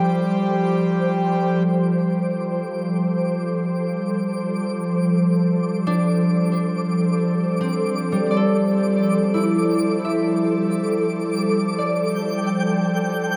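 Ambient in free time, peaceful and weightless, this excerpt rests on a G9sus4 chord from an ethereal, airy pad with ensemble chorus held up front, while a reedy harmonium drone breathes alongside it until 1.6 seconds, a fingerpicked concert harp rings out arpeggios through tape echo, falling away after 0.9 seconds and returning at 5.9, and a bright, twinkling granular texture fades in from 1.5 seconds high above, all suspended in a vast, echoing space.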